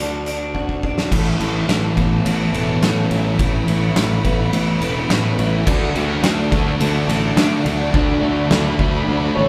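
Post-rock build-up with a euphoric, hopeful lift, cut from a longer piece: a bowed, smooth-topped string section holds chords in the background while a bright, clean twelve-string electric guitar picks arpeggios through harmonic tremolo, a growly overdriven fingered bass drives beneath an oversized, low-tuned drum kit with a fat snare and dark cymbals that pushes up front after a fill ending at 1.1 seconds, two fuzz-distorted guitars join with riffs at 1.1 and 5.7 seconds, and a twangy, slightly broken-up phaser guitar from a small old amp touches a single melody note at the very end, all inside a wet church-like hall.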